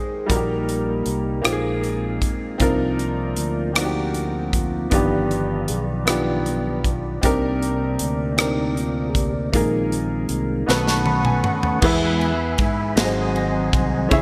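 A mellow tonewheel organ leads this slow, soulful gospel fragment in 6/8, its soft, flute-like tone shaded by a slow rotary speaker and chorus vibrato as it carries the solo line throughout. Beside it, a clear upright piano plays accompaniment up front, its woody, slightly worn and slightly detuned character giving the reverent mood a natural, lived-in quality. A fingered electric bass with a round, directly amped sound and a polished studio drum kit in a small, airy room both enter at 0.3 s, the kit marked by a punchy kick and a medium-tuned snare among its cymbals, rim clicks and toms. Over rich chords such as Cm11 and G7b13, the drums and piano share a fill from 10.7 s before the harmony moves to E at 11.8 s, opening a new section that closes on G#7. A moderate plate reverb and bright 1980s-style digital production give the whole mix a glossy, spacious sheen.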